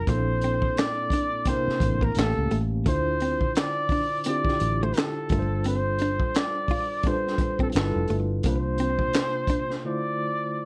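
Swung sixteenths at 86 BPM drive this sultry, late-night neo-soul R&B excerpt in D minor, where a crunchy, gritty breakbeat kit with a high-tuned snare and tight kick sits up front beneath a clear, punchy flugelhorn melody carrying vibrato and slapback echo, joined by a tremolo-washed tine electric piano through a combo amp, a round, foam-muted vintage electric bass, and a dark hollow-body jazz guitar line tucked in the background with its own slapback, before the bass stops at 9.0 seconds and the drums at 9.8 seconds for a brief break over a closing Dm9.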